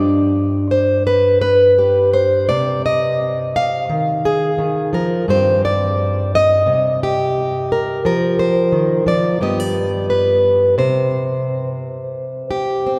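Reflective and intimate, this 13-second folk fragment, cut from a longer piece, features a solo fingerpicked steel-string acoustic guitar, plugged in and placed up front, moving at 87 BPM in a straight 4/4 across a range from G2 to F5. Its tone is warm, with audible finger squeak, as the harmony drifts from G through Ebsus2, Gsus4 and F5 back to G, interspersed with stretches that sit outside any chord. A wet cathedral reverb with a 4.3-second tail surrounds the guitar, giving the sense of a church or concert hall.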